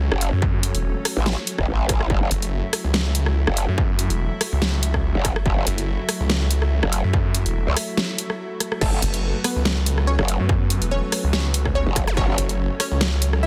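Heavy wobble dubstep in a menacing, aggressive half-time swing, where a snarling distorted sawtooth bass and a detuned, formant-filtered growl bass sit up front over a lush, warbling pad pumping under sidechain, an electronic kit with a huge snare and bright hats, and a distorted layered kick, before a short break at 8.0 s brings in a punchy unison pluck melody soaked in dub echo and a very quiet zap near 12.1 s, all in a dense, heavily limited, nearly dry mix cut from a longer piece.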